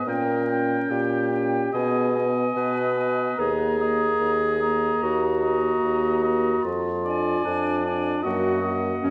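Heard through a wet recital-hall reverb with a layer of vinyl crackle, this serene, lyrical passage from a slow romantic movement for wind quintet unfolds at 73 BPM in a rubato 4/4, tuned to A4 = 444 Hz. A pure, vibrato-touched silver flute carries the melody above a distant, roomy oboe on the second line, while a warm, punchy clarinet and a mellow French horn with a smooth top fill in the accompaniment. An up-front bassoon supplies the bass from 0.1 s, sitting with the clarinet as the most prominent voices beneath a softer flute as the harmony moves from Gdim/Bb toward D#m/F#.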